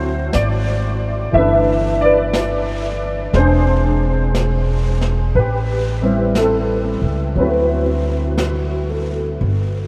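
A warm grand piano and a pizzicato upright bass open this late-night, romantic jazz ballad excerpt together, the piano polished and present with a chorus shimmer as it comps through rich dominant and minor-seventh harmonies, while the woody, growly bass sits up front with a dark, thumpy tone. From 0.3 seconds a jazz kit played with brushes joins quietly, its smooth, dark snare and hi-hat tucked beneath a gentle swing. The whole mix is soaked in a huge ambient reverb that gives it a dreamy, floating haze, and the passage is cut from a longer piece.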